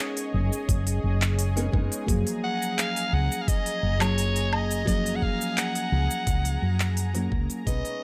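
Blissful and warm, this sunset chillout excerpt drifts along in a straight, unhurried 4/4 from a Bmaj13 chord to F#maj9. A dark, full-bodied nylon-string guitar, fingerpicked in a deep classical manner, carries the accompaniment beneath a lush, thick unison pad whose detuned, warbling sawtooth chords bloom slowly and linger under a chorus effect. A smooth R&B kit of handclaps, hi-hat, shaker and woodblock sets a produced, tape-softened groove, joined at 0.7 seconds by a knocking electronic kick, while a round, punchy fretless bass sits up front with a woody, hollow-body tone. At 2.4 seconds a raspy soprano saxophone takes the solo melody, its edgy, pop-style phrasing full of vibrato and scooped notes, trailed by tape echo. The whole piece has a dry, gritty hardware character set in digital ambience, and it fades out from 5.8 seconds.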